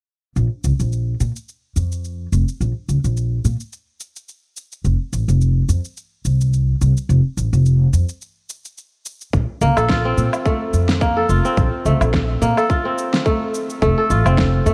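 A woody, thumpy pizzicato upright bass sits up front from 0.4 seconds, its steel strings coloured by tube saturation and sidechain pumping. This is a meditative, warm organic downtempo piece at 107 BPM in 4/4, with a light 16th-note swing. The bass shares the opening with a layered electronic kit of shaker, woodblock and a fat snare, all overdriven and set back in the mix. At 9.3 seconds the second section arrives with a tight, overdriven electronic kick that was re-recorded in a large room. A fingerpicked kora follows at 9.6 seconds, up front with crisp, ringing arpeggios trailed by tape echo. The harmony moves between Bb and F under a small room ambience and the warbly pitch drift of worn cassette tape, in this passage cut from a longer piece.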